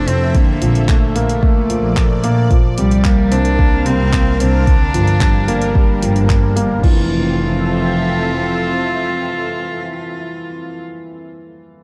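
An overdriven, up-front electronic kick drives this luminous, hopeful piano and strings electronica at 111 BPM in F major, alongside a layered deep house kit of crash cymbal, handclaps and hi-hat that enters just before it, until both stop at 6.9 s, while a muted, bowed double bass section pumps beneath a lush, detuned unison pad with chorus and phaser, a long-sustaining grand piano riff with delay, and an intimate sul tasto cello melody with delay and light vibrato, set in light reverb within a dark production.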